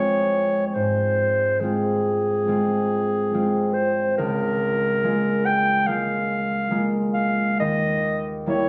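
Elegiac and solemn, this romantic classical duo in F minor moves at a rubato 70 BPM in 4/4, with a mellow, smooth-topped clarinet singing the melody up front between Ab4 and G5 over a ringing, thumb-plucked concert harp accompaniment reaching from Db2 to F4. The harmony passes from Fm through Fm/Ab and Bbm7/Db before landing on a tense Eb(b9) at 7.6 seconds, where this short excerpt from a longer piece breaks off. Both instruments sit close in a phone recording made in the room, colored by light club reverb and compression.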